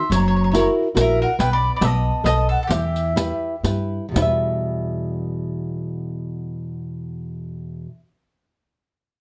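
Swung eighths in a lilting triple metre carry this romantic, sunny Italian folk serenade, which gradually slows from 1.4 s to 4.2 s. An airy, tongued baroque flute with vibrato sings the melody over a bright, picked double-strung mandolin second line, while a boxy, fingerpicked flamenco guitar with finger squeak sits up front beside a woody pizzicato upright bass, and a close, dry riq adds jingles. Flute, mandolin and riq have all stopped by 4.4 s, leaving guitar and bass to carry on in a wet studio reverb through the rest of this fragment of a longer piece.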